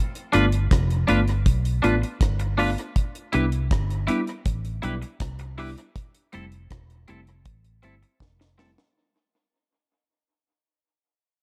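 Lightly reverberant and smooth, this short cut of longing lovers rock reggae fades out throughout as a dry, dark drum kit with a high-tuned snare, tight kick and gated reverb sits up front beside a round, punchy, foam-muted fingered bass, while a bright, twangy guitar plays clean, compressed stabs with analog chorus over a soft, full-bodied FM electric piano treated with chorus and phaser, moving through G7, Cmaj7 and Fmaj7 before a drum fill at 8.2 seconds.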